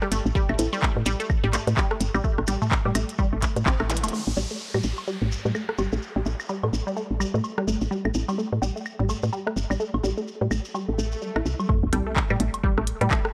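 Sparse and hypnotic, this minimal techno cut rides a swung groove where a squelchy, resonant blip pluck riff with phaser and tape echo and a woody, round FM bass pump against a deep electronic kick, while a booming analog drum machine's rim clicks, toms and woodblock, a clicky minimal kit with handclaps and filtered hats, a grainy, distant shekere, and muted dub chord stabs in the background fill the dry, gritty mix, as zaps, a downlifter and a swell from 10.9 seconds build to a sub drop and impact at 11.7 seconds where the kick returns, with the kit following just after.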